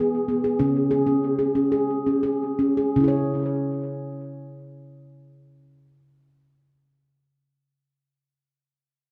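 A ringing handpan of nitrided steel, played with the fingertips and placed up front, carries this gentle, hypnotic world meditation piece cut from a longer work. It plays solo in C# minor pentatonic across a range from C#3 to C#5, and falls silent at 7.1 seconds. The pulse runs in 7/8 with a straight feel, counted in eighths between 159 and 201 BPM, and the opening slows down before a new section begins at 3.0 seconds. The harmony opens on E, moves to C#5 at 0.6 seconds, then settles onto C#m from the 3.0-second mark. The handpan has a boxy small-room tone and carries an analog delay, set within a wet echo chamber reverb of 1.6 seconds and studio ambience in an echo-heavy mix.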